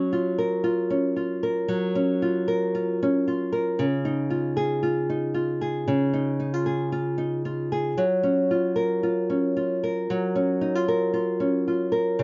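Pop instrumental in a sunny, carefree mood, moving at 114 BPM in 4/4 with a light 16th-note swing in F# major. A lone nylon-string guitar carries the whole piece from 0.0 to 12.2 seconds, fingerpicked and sitting up front with a small, intimate body. Its tone is acoustic and warm, spanning C#3 to A#4, and finger squeak adds a close, human touch. The harmony moves from F#maj7 to C#add9 at 3.8 seconds and settles back on F#maj7 at 8.0 seconds. A light reverb surrounds the guitar, and the top end is soft and rounded, with nothing above 7.5 kHz, in this brief section cut from a longer piece.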